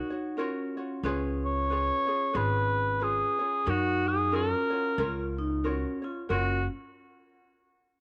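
A mellow cor anglais leads this short, sunny Hawaiian excerpt, its soft attack and smooth top giving the melody a classical, up-front solo voice. Beneath it, a vibraphone struck with medium hard mallets and the motor off adds a dark, metallic, ringing second line, while a light fingerpicked ukulele supplies acoustic accompaniment. An upright bass enters at 1.0 s, its pizzicato steel strings sounding woody and sitting up front in the mix. The languid swung feel drifts over harmony that moves from a major-seventh chord to a dominant seventh and back again. Light reverb and a small room ambience frame the parts before they stop around 6.7 s.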